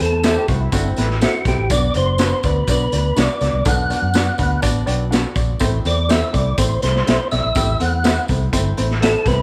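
A moderate spring reverb and a small-room ambience frame this joyful, warm uptempo 1960s-style soul excerpt at 123 BPM in a straight 4/4, tuned slightly low to A4 = 437 Hz. A percussive tonewheel organ carries the melody throughout, its mellow, round tone lightly overdriven and shaded by chorus vibrato and a fast rotary speaker. Beneath it, a round, amped fretless electric bass sits up front, while a raw garage drum kit with a punchy kick, medium-tuned snare and hi-hat pumps in a saturated room with a rolled-off top. A woody, slightly detuned upright piano with audible action noise supplies intimate accompaniment and adds a fill from 4.1 to 5.6 seconds, and a distant, jingly tambourine rings in the background. Two electric guitars sit further back: a bright, twangy, slightly broken-up one through a small old amp with analog chorus plays a brief picked riff from 0.2 to 1.5 seconds, and a dark, clean, fingered one adds stabs with a warbly pitch drift. 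The harmony moves from Am to Bm and back to Am.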